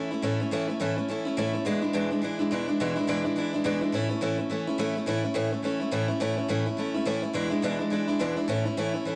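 Rowdy and rollicking, this brief rock excerpt in A major races along at 211 BPM with a swung 4/4 feel, as a bright, picked steel-string acoustic guitar plays solo and up front through a moderate echo-chamber reverb with an auditorium sense of space, finger squeaks audible as it moves between A and E7 chords over roughly 9.2 seconds.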